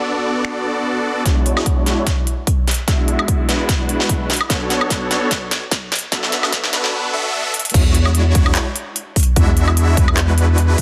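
Bittersweet and emotional, this future bass excerpt opens on huge, lush, detuned supersaw chords coloured by cassette tape, dub echo and sidechain pumping, with a big-room dance drum kit of crisp hats, finger snaps, handclaps, woodblock, crash cymbal and a soft-clipped snare joining at 0.4 seconds. At 1.3 seconds a punchy electronic kick and a thick, saturated sine sub bass sitting in the background arrive, while a drum fill and a filter sweep on the supersaw build toward the drop at 7.7 seconds, which lands on an E13 chord. A half-time feel with light swing, a touch of reverb and a dense, heavily limited master round out the sound.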